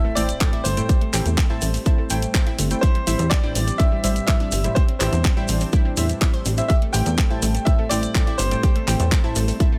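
A straight 4/4 pulse at 124 BPM drives this expansive, dreamy progressive house passage in A minor, cut from a longer piece. A punchy, layered electronic kick sits up front from 0.4 seconds, joined by house-kit handclaps and hi-hat and grainy, close maracas tucked in the background. A funky, wave-folded analog bass with a plucky filter snap also sits forward, pumping against the kick. The harmony moves from Am7 to C and back, carried by deep, warbling chord stabs with chorus and delay, a warm, detuned analog pluck playing arpeggios with a moving notch, and a very quiet, thick unison pad holding sustained chords. On top, a brilliant baby grand piano with audible action noise sings the melody between C5 and G5, its long sustain pumping and echoing through delay. A barely audible electronic impact flickers near the start, and the mix stays close and dry with little reverb.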